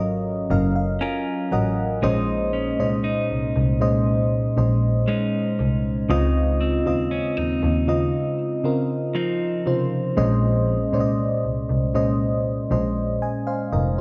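Late-night and moody, this slow, straight R&B excerpt sets a mellow, round FM electric piano up front with chorus, opening with a fill and carrying the Gbmaj7, Bbm11 and Dbmaj9 chords, while a clean, picked electric guitar plays compressed arpeggios through tape echo until 10.8 seconds and a bowed double bass adds a focused, vibrato-touched low line, all in a dark production with light reverb, studio ambience and a break from 8.1 to 10.2 seconds.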